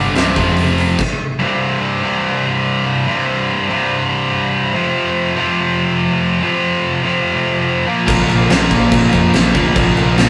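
A rough rehearsal-room recording sits in a moderate stone room reverb, giving this energetic, swaggering hard rock excerpt a raw, live edge. A bright, scooped high-gain guitar drives a riff up front through the entire clip, joined by a second scooped high-gain guitar that stays very quiet, while an overdriven, double-tracked electric guitar adds its own riff in the background. A growly, amped picked bass and a huge arena drum kit with a fat snare, punchy kick, crash and hi-hat play in the opening moments before the band breaks off at 1.0 seconds. From there the up-front guitar carries the riff alone through C5, F5 and Bb5 power chords until the full band crashes back in at 8.1 seconds, drums up front and bass punchy, for a heavy finish to the cut.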